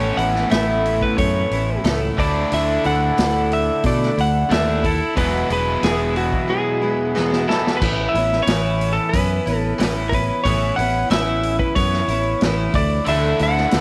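A straight 4/4 pulse at 91 BPM drives this jangly, hopeful folk-rock and heartland-rock excerpt in A major, where a dark, slightly broken-up lead guitar carries the melody over a shimmering, octave-doubled twelve-string acoustic, a growly fingered bass and a vintage kit with dark cymbals that enters at 0.2 seconds, while a crunchy, double-tracked overdriven guitar riff drops out at 7.8 seconds after a drum fill from 7.1 seconds and returns at 13.1 seconds, all through Aadd9, Dsus2 and Eadd9 chords in light small-room ambience.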